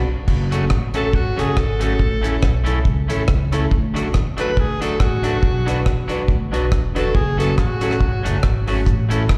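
A breathy, whispered alto saxophone solos from 1.0 to 8.6 seconds over a driving, energetic 140 BPM ska groove in F# minor. Tape and slapback echo colour the sax, a twangy, slightly broken-up electric guitar, and a worn, slightly detuned upright piano whose stabs carry audible action noise. Up front, a dark, thumpy gut-string upright bass and a dry, tight reggae drum kit with crash, hi-hat and rim click drive the groove, all heard as a live gig through the venue's PA with small-room ambience and recital-hall reverb.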